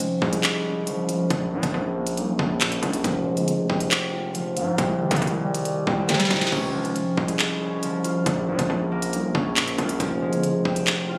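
Drill hip hop at 138 BPM in a half-time 4/4 feel and F minor, dark and menacing, built on a bright, fingerpicked concert harp ringing through a low-pass filter sweep until 6.5 seconds over a Db, Bbm, Fm, Cm progression, with an electronic drill kit of knocking kick, sharp snare, crisp hi-hats, handclaps and crash that adds a fill just before 6.5 seconds, and a heavy, saturated 808-style bass with a fast attack and a noise layer entering at 0.2 seconds, all three parts up front in a fragment captured on a phone with light reverb.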